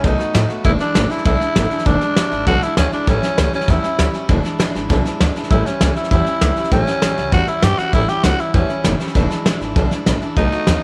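At 198 BPM in a straight 4/4, this short rockabilly cut from a longer piece charges ahead with a retro, rowdy energy. A growling tenor saxophone carries the melody up front, its raspy, breathy tone edged with light vibrato and a gritty punch. Beneath it, a picked steel-string acoustic guitar supplies bright, full-bodied accompaniment on fresh strings, while an upright bass thumps out a woody, dark pizzicato line on gut strings. A soft brush drum kit rounds out the groove with a fat snare, a punchy kick and hi-hat, its sound roomy with a rolled-off top. The changes move from B7 to E7 at 0.7 seconds, then shift between A7 and E7, all set in a light studio reverb.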